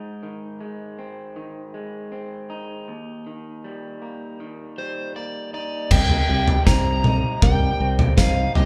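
A slightly broken-up, lo-fi electric guitar through a small old amp opens this euphoric, soaring post-rock excerpt at 79 BPM with picked arpeggios over Ab and Eb; an overdriven slide guitar joins with a dark melody at 4.8 s; and at 5.9 s the harmony moves to Cm7 as an up-front loose indie drum kit with a punchy kick and rolled-off top, a direct fingered electric bass, and a mellow felt-muted upright piano with audible action noise arpeggiating in the background all come in, the band playing live together in one room with moderate large studio reverb.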